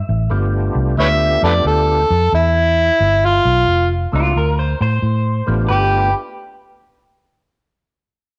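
A gritty, overdriven harmonica carries the melody up front from 1.0 s, taking a jazz-style solo with scooped notes, tongue slaps and light vibrato in this soulful, laid-back electric blues shuffle cut from a longer piece. Beneath it, a dark, round, foam-muted electric bass sits punchy and forward, and a percussive tonewheel organ adds full, lightly driven chords through a slow rotary speaker and chorus vibrato. A slightly broken-up, lo-fi guitar through a small old amp plays a compressed second line in lush chorus, while the swung groove moves over G7 and D5 before shifting to G9 at 5.7 s inside a moderate echo-chamber reverb.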